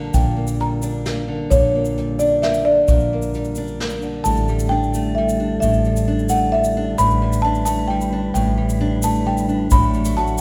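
A woody marimba carries the melody in this peaceful, pastoral acoustic folk piece in 3/4 at 132 BPM, over fingerpicked nylon-string guitar, a dark, round fretless electric bass, a grainy tube shaker, and an up-front brushed drum kit that plays until 3.9 seconds and returns at 9.7 seconds, while a mellow, flute-like tonewheel organ with a slow rotary speaker adds sustained chords from 4.2 seconds, all in a moderate concert-hall reverb.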